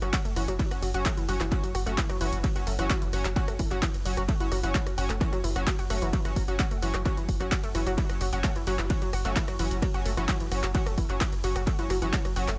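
Intense and dark, this driving peak-time techno excerpt in F# minor pushes along at 130 BPM in a straight 4/4, with an overdriven, up-front electronic kick arriving at 0.1 seconds over a thick, saturated sub bass holding F#1 under a low-pass filter, a dry, punchy analog drum machine of handclaps, hi-hat, ride cymbal and rim click with analog delay, a round, nasal, wave-folded analog pluck riff with chorus and tape echo, and edgy sync-sweep polysynth stabs with analog delay, all pumping against the kick in a light-reverb, echo-heavy mix built on an F#5 chord.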